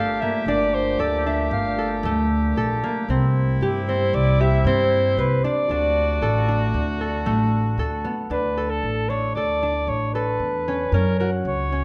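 Moving in a straight five-beat meter, this playful, shimmering fragment of contemporary chamber music sets a mellow, vintage-toned soprano saxophone solo with light vibrato up front over fingerpicked, ringing concert harp arpeggios and a woody pizzicato upright bass. A warm woodwind section with a soft attack and smooth top holds sustained chords beneath them until 8.3 s, when the music shifts into a new section carried by saxophone, harp and bass alone. A moderate recital hall reverb surrounds the ensemble.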